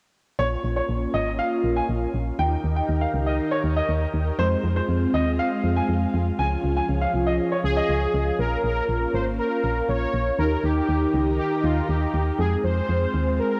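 Pop with a driving yet melancholic mood, this short piece cut from a longer work moves in a straight four-beat pulse over a minor-leaning progression of Bbm, Eb, Fm and Db. A punchy, round FM bass sits low and up front, its dark, decaying tone giving the groove its weight. Ensemble organ-string pads hold sustained chords throughout, their mellow, vintage organ-like colour shimmering through phaser and ensemble chorus. A clear concert grand piano carries a second line in the upper register until 7.9 s, trailed by analog delay. At 7.6 s a bold, fat analog synth brass takes the melody, its detuned sawtooth tone warbling with vibrato, chorus, a filter sweep, cassette tape character and analog delay. The whole mix sits in a lush hall reverb with the slightly worn feel of a home cassette recording.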